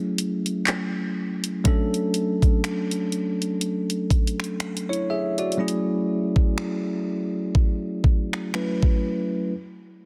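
A bell-like tine electric piano opens this short cut from a contemporary R&B piece, its bright, clean and direct tone sitting up front from 0.0 seconds and carrying a longing, sensual mood in a slow, swung groove. The drums arrive at 0.2 seconds with an electronic, produced kit of finger snaps, handclaps, hi-hat and a knocking kick, mixed a little louder than the keys. The hats have a soft, tape-saturated glow, while the snare carries a gentle soft-clipped edge. After a brief opening break, the harmony moves from a lush minor ninth chord to a major seventh at 1.7 seconds and returns to the minor ninth later on. Light reverb surrounds the parts, and the dense, heavily limited master keeps the whole texture close and polished.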